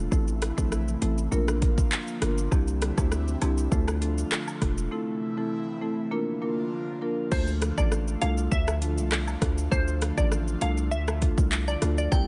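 A punchy, heavy 808-style bass and an overdriven deep house drum kit with a deep kick, metallic hats, handclaps, rim clicks, shaker and crash sit up front in this sultry, hypnotic dancehall excerpt at 100 BPM in D minor. Woody marimba accompaniment and a soft, breathy pad treated with chorus and phaser both pump with the sidechain, while a woodblock and cabasa join in the background at 2.5 seconds. A crystalline, warbling wavetable pluck carries the melody from 7.3 seconds, and a bright FM synth bell glints in at 12.1 seconds under light digital reverb.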